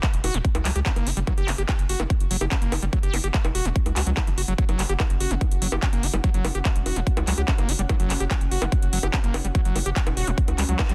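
A straight 4/4 pulse at 145 BPM drives this hypnotic psychedelic trance excerpt: a punchy, up-front electronic kick sits under a tape-tinged kit of bongos, handclaps and metallic hi-hats, a round, deep analog bass enters at 0.1 seconds, a squelchy, screaming acid line brings resonant filter sweeps with distortion, chorus, tape echo and sidechain pumping, and from 1.5 seconds a moody, detuned ambient pad rests in the background with chorus, reverb and its own pumping, within a dense, heavily limited modern master that closes on a band accent at 10.8 seconds.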